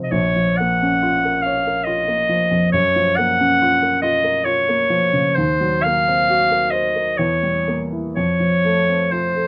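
A bright, soft-attacked clarinet with a vintage tone carries the melancholic, yearning melody up front in this short romantic classical excerpt, set in Bb minor in 3/4 at a rubato 60-72 BPM. A dark, mellow grand piano with short sustain accompanies from the low bass into the middle register, moving from Bbm through Gbmaj7, Cm7b5/Eb and Edim7 to F. Both instruments sit up front in a light reverb for the full 9.5 seconds of this fragment from a longer piece.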